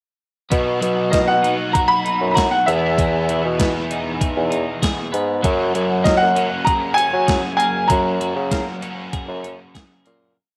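Indie rock at 98 BPM in a carefree, upbeat mood, this short piece sets a ringing overdriven electric guitar and a twangy twelve-string electric guitar, picking arpeggios through lush chorus, over a syncopated bassoon bass riff with light vibrato and a thumpy, sampler-style 80s drum machine whose gated reverb snare drives an indie four groove. From 1.1 seconds a brilliant, woody upright piano, worn and slightly detuned, carries a motif-based melody through slapback echo, while the chords move from Bmaj7 to Emaj7 to F#add9. The dry mix keeps the bassoon, drums and piano up front, and a fade-out runs from 7.9 to 10.4 seconds.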